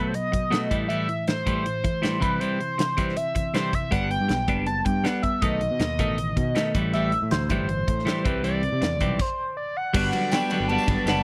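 A screaming, gritty synth lead carries a wistful yet upbeat indie rock melody over a bright, twangy twelve-string electric guitar riff and a punchy big-room drum kit, all moving at 159 BPM in G major. A growling, overdriven fingered bass joins at 3.9 seconds, and after a brief full stop the section turns at 9.9 seconds, where a jingly tambourine, a faint buzzy combo organ and a slightly broken-up small-amp guitar drenched in lush chorus slip in behind. The sound is dry and close, like a 1970s studio take, and this clip is cut from a longer piece.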